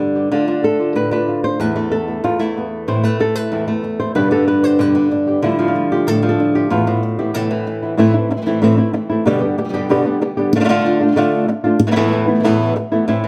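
In a straight 4/4, this passionate, fiery flamenco fragment, cut from a longer piece, sets a dark, thumb-plucked guitar up front carrying the melody, with audible finger squeak, over a second fingerpicked guitar playing warm stabs in the background. Both guitars play from the opening, cycling through Dm, Esus4 and Am chords, with a shift to a new passage at 8.0 s and the stabs ending at 13.1 s, just before the melody ends. A moderate large-studio reverb gives the pair a roomy, resonant ring.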